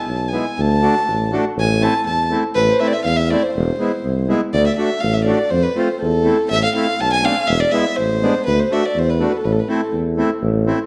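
Bittersweet yet festive, this short klezmer cut from a longer piece moves at 122 BPM in a straight 2/4, set in A harmonic minor and tuned slightly low to A4 = 439 Hz. A single bowed violin carries the melody from the very start. Its dark, smooth tone is played sul tasto with a soft attack and light vibrato, sitting close and intimate at the front, with a short slapback echo trailing its lines. A warm tuba in a classical style joins at 0.1 s on the bass, with light vibrato and a roomy quality. A reedy, boxy accordion fills in the accompaniment from 0.3 s. The harmony cycles through E, D and A minor with a turn to F in the second section, and the whole is wrapped in a moderate recital hall reverb with a dark, warm production.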